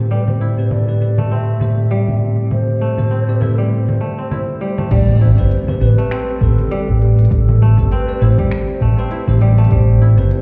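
Organic downtempo with a meditative, gently swung feel, in which a bell-like tine electric piano pumps beneath an airy, hollow ney melody with delay, fingerpicked kora arpeggios ring alongside, a tense, nasal bowed-like drone stops at 4.9 s, and congas, cabasa, snaps and crisp hats sit in the background until a punchy, round fretless bass with ensemble chorus, a deep electronic kick and a background impact arrive at 4.9 s, all heard muffled as if through a wall in a stone room.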